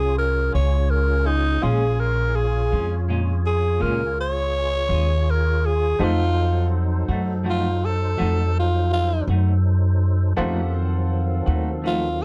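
Smoky and brooding, this slow minor-key blues moves at 55 BPM in a straight 12/8, a short piece lifted from a longer performance in Bb minor. A raspy, growling tenor saxophone carries the melody up front, its gritty tone marked by scooped notes and light vibrato in a jazz style. Beneath it, a thumpy, woody upright bass is plucked with real weight, while a bright upright piano adds polished, brilliant accompaniment with long sustain. A fat tonewheel organ holds sustained chords through light overdrive, chorus vibrato, key click and a slow rotary speaker, and a clean semi-hollow electric guitar enters at 0.5 seconds with picked, tremolo-tinged accompaniment. The harmony rests on Bbm7 before shifting to F7b9 at 6.0 seconds, all set in a dark production with light reverb.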